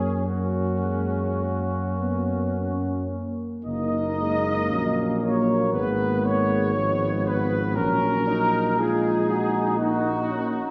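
Tender and serene, this brief excerpt from a hymn-like classical piece for brass band unfolds in 4/4 with a gently rubato feel. Up front, a trumpet section carries the melody with light vibrato and soft attacks, while a warm flugelhorn sings a second line from a distance. A mellow trombone section and a dark, roomy euphonium supply accompaniment from the background, and a punchy, smooth-topped tuba anchors the bass, all heard from further back on a reverberant scoring stage.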